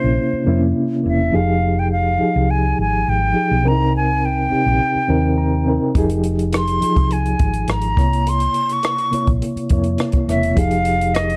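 Lush 1970s-style soul in F minor at 104 BPM, this smooth, bittersweet passage from a longer piece sets a breathy, close-miked silver flute melody over a reedy electric piano with fast tremolo and a round, hollow-body fingered bass, all under light studio reverb. The electric piano plays a fill from 5.1 to 6.0 seconds, and at 6.0 seconds a compact, dry cocktail kit enters with hi-hat, rim click and a punchy kick. Chords such as C7b9, Fm9 and Cm7 give the harmony its bittersweet colour.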